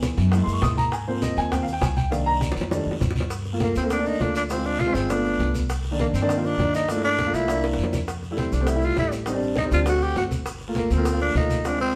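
Afro-Cuban jazz at a fiery, sultry 201 BPM in G minor, cut from a longer piece, where an intimate baby grand piano with long sustain and audible action noise comps up front alongside a woody, thumpy pizzicato upright bass, warm low-tuned congas, tight high-tuned bongos, a raspy dry guiro and grainy background maracas, until a gritty, growling tenor saxophone enters at 3.6 seconds to take an up-front solo full of scooped notes and light vibrato, all in a moderate studio reverb that feels like a band playing live together.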